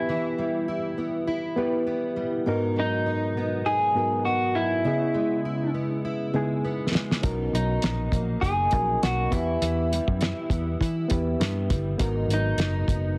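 A relaxed 4/4 groove at 101 BPM, with a light swing on the sixteenths, carries this laid-back, nostalgic stretch of indie bedroom pop, cut from a longer piece. From the start, a fingerpicked, plugged-in jumbo steel-string acoustic guitar with a full body, analog chorus and a warbly pitch drift shares the accompaniment with a reedy, worn, slightly out-of-tune electric piano heard through its built-in speakers and a cassette-tape haze. Up front, an electric guitar through a small old amp carries the melody with a lo-fi, slightly broken-up picked tone, bathed in lush chorus and tape echo. A cloth-damped drum kit enters at 7.0 s, dry and dark with a fat snare, tight kick, hi-hat and rolled-off top. A foam-muted, round vintage electric bass follows at 7.2 s. The chords drift from Em through G#m7, C#m7 and Bmaj7 and back, all set in moderate spring reverb and squeezed into a heavily compressed, radio-like sound.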